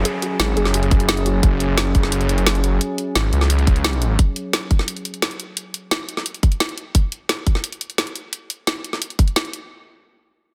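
Aggressive and futuristic, this dark technical drum and bass fragment opens on an eerie, metallic FM drone shaped by a filter sweep and a thick, detuned saw bass with tube saturation, both pumping against the sidechain. A very quiet downlifter sounds briefly, and a warbling, lo-fi pluck flickers through a short arpeggio. Up-front electronic drums bring a woody snare and bright hats, joined at 0.9 seconds by a tight, layered kick, and once the drone and bass stop at 4.2 seconds the kit carries on in light digital ambience under a dense, heavily limited master.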